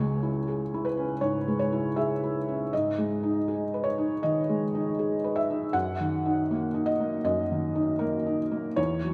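Unfolding in a rubato 4/4 around 79 BPM, this brief, melancholic neoclassical minimalist fragment features a solo felt-muted upright piano, soft and mellow with audible action noise, sitting up front with tape echo inside a reverberant recital hall, its chords moving from C#m to G#m at 2.7 seconds and to D#m/F# at 5.7 seconds across a range from C#2 to F#5 before the cut at 9.1 seconds.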